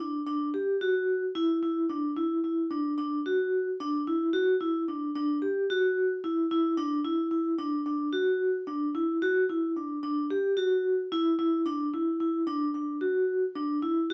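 A lone vibraphone struck with hard mallets opens this brooding, driving progressive instrumental fragment, its metallic, ringing tone shimmering with a fast motor vibrato and sitting up front in a boxy small room. The solo part stays in a narrow middle register and carries a 9/8 metre with a straight feel through to 14.1 seconds. Light reverb and a dark, warm production give it a moody, close-up character.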